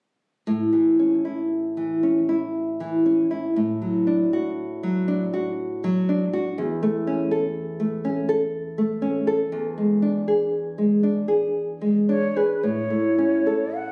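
In a slow, rubato 3/4 at 59 BPM with uneven beats, this serene, tender romantic duo in A major opens with a dark, small-sounding fingerpicked nylon-string guitar playing alone from 0.5 s, moving through A, D over A, A over E and E7 before returning to A. At 12.1 s the silver concert flute enters with an airy, tongued melody touched with vibrato, carrying the music into a brief new section as the fragment ends at 13.9 s. Both instruments sit up front in a moderate recital-hall reverb, captured on a phone in the room.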